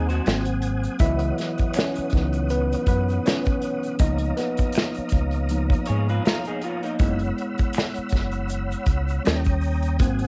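This R&B and neo-soul excerpt has an introspective, late-night mood, with a gentle sixteenth-note swing and a close, dry home-cassette sound. A worn, slightly out-of-tune tine electric piano takes the solo throughout, lightly overdriven through a combo amp and placed up front, over chords moving from G#7 through C#m11 and C#13 to F#7sus4 and D#7. A fingered dub bass sits just as close, round and deep, while an unplugged acoustic drum kit plays hi-hat, tight kick and a medium-tuned snare with bundle sticks in a small room. A soft, flute-like tonewheel organ holds sustained chords, colored by chorus vibrato and a fast rotary speaker. A dark, slightly broken-up picked electric guitar adds a second line, heard only until 0.5 seconds and again from 5.9 to 7.2 seconds. Egg shaker, finger snaps and group handclaps sit in the background with a vintage, band-limited tone.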